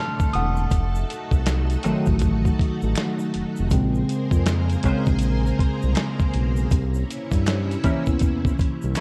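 The excerpt opens on a worn, slightly out-of-tune tine electric piano played through a combo amp, soloing over lush string machine chords with a vintage, sub-octave glow and an ensemble chorus, moving from F6 through F7b9 and Bbm9 to C7b9. It's a soulful, introspective neo-soul and R&B groove at 80 BPM in 4/4, swung on the sixteenths. A dusty sampler-style drum kit arrives just after the start, up front and compressed, with a thumpy kick, fat snare and gritty hi-hat, while an egg shaker and finger snaps sit in the background. A smooth sawtooth-and-triangle synth bass with vibrato and a touch of ring modulation settles in low and mellow beneath them. From 1.8 seconds an electric guitar through a small old amp adds a twangy, slightly broken-up second line with analog chorus, and the full band accents the closing stretch before a clear, tight horn section stabs at 9.0 seconds. The production is dark and warm with little reverb.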